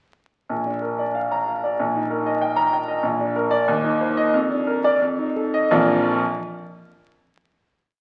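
In a flexible, rubato 2/4 that drifts between 83 and 97 BPM, this classical piano study in Bb major unfolds with brilliant, sparkling energy. A solo grand piano, warm and present with a long sustain, sits up front and sweeps through arpeggios across a span from Bb1 to Bb5. The harmony moves from Bb through Eb/Bb, Cm/Eb and Bb/F to an F7 before settling on a closing Bb chord at 5.7 seconds, and the piano rings until 6.2 seconds. A wet, large studio reverb surrounds the instrument, while the sound of a very old 78 rpm record, complete with vinyl crackle, lends the whole piece a vintage patina.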